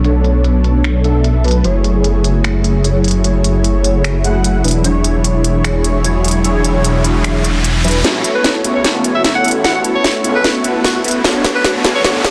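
Future bass at 150 BPM in A major with a half-time, lightly swung feel, bright and playful, where a fat, detuned sawtooth polysynth riff with analog chorus and delay rides over a thick, saturated saw bass, an airy pad in the background, and a crisp trap kit of snaps, hi-hat and sharp snare, while a riser enters at 5.9 seconds and a breathy alto saxophone with vibrato carries the melody from 8.4 seconds as a drum fill and filter sweeps drive the build-up on this dense, heavily limited fragment of a longer piece.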